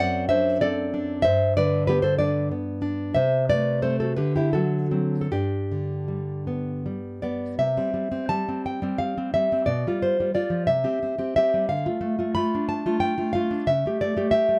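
Close, detailed miking with light reverb puts a single nylon-string guitar up front, its fresh strings giving a dark, full-bodied tone with the occasional finger squeak. This sunny, nostalgic romantic piece for solo classical guitar is fingerpicked in a rubato 6/8 at roughly 50-65 BPM in dotted quarters, spanning F#2 to B5. It opens in G major and moves to C major at 7.6 s, ending on an A7/C# chord as the excerpt cuts off at 14.6 s.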